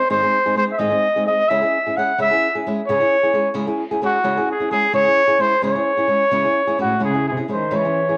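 A mellow, vintage-toned trumpet opens this dramatic, passionate mariachi fragment at 0.0 s, playing a classical-style solo melody up front with a cassette-tape color, while a bright, fingerpicked flamenco guitar with fresh strings enters at 0.1 s to accompany in a loose, rubato 6/8. The harmony moves from G# to C#m, and at 6.8 s a single bowed cello joins with a focused second line played with vibrato. The home cassette recording sits in a small room, bathed in wet spring reverb.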